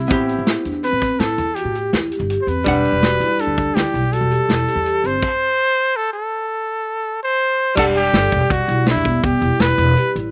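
Progressive instrumental band music in 7/4 at a driving, tense 164 BPM, cut from a longer piece and captured outdoors with a dry sound. An up-front, clear trumpet with jazz vibrato carries the melody over a dark, clean hollow-body archtop guitar, both touched with slapback echo, while a mellow soft-mallet vibraphone with its motor off rings out arpeggios, a woody pizzicato upright bass anchors the low end, and a vintage kit with a punchy kick, a medium-tuned snare and rolled-off top pushes the groove. The harmony moves from Am7 to Em7 before a stop from 5.2 to 7.8 seconds, after which the music resumes on Em7.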